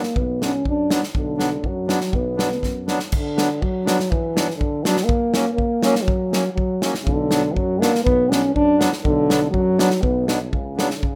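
Festive and jolly, this short cut from a longer alpine folk dance-band piece moves at 122 BPM in a straight 2/4, set in B harmonic minor. A euphonium carries the melody up front, its classical-style tone warm with a light vibrato yet sitting distant and roomy under plate reverb. Beneath it, a reedy single-reed accordion with dry tuning supplies clear, boxy accompaniment, also touched by plate reverb. An acoustic drum kit sounds airy and polished, with a punchy kick, medium-tuned snare, hi-hat and crash cymbal, and a drum fill lands at 2.6 seconds before the phrase repeats. A mellow tuba with a smooth top and light vibrato plays the bass line from 0.2 seconds, drops out, and returns at 7.1 seconds as the harmony moves from B minor through F sharp and back. The whole has a rough home-demo feel in a moderate studio room.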